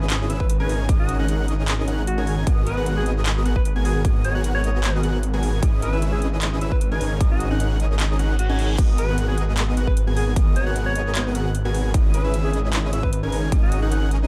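Dreamy and emotional, this short future bass excerpt moves at 152 BPM in a half-time 4/4 feel, set in G# minor with lush ninth and suspended chords circling over a G# pedal. A thick, saturated detuned saw bass sits up front on a low G#1, while a huge, compressed supersaw riff fills the middle with vibrato, both breathing with sidechain pumping against a punchy, layered electronic kick. Over this, a mellow, breathy alto saxophone carries the melody in a jazz-style solo with scooped notes and a vintage subtone, trailed by dub echo. High in the background, a soft, airy lead spins arpeggios with chorus, and a big-room dance kit adds crash cymbal, handclaps and metallic hi-hats. The kick drops out from 8.0 to 8.8 seconds as a faint reverse cymbal rises from 8.3 seconds into the next return of the chords. The mix is dark and close, with little reverb.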